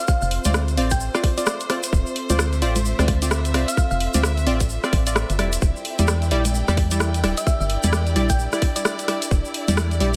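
A hollow, dark, organ-like FM bass and a tight, up-front electronic kick drive this moody, skippy two-step garage excerpt, joined by a garage kit of congas, hi-hat and rim click, a grainy tube shaker, and punchy, wave-folded chord stabs with chorus and digital delay. A round, tine-like thumb-piano-style pluck carries the melody, dropping out after 4.0 seconds and returning at 7.4 seconds. Behind them, an ethereal, airy pad sits in the background and a bowed studio string section adds vibrato, both pumping with the sidechain, as the harmony moves from Dm7 to Em7b5 at 5.4 seconds.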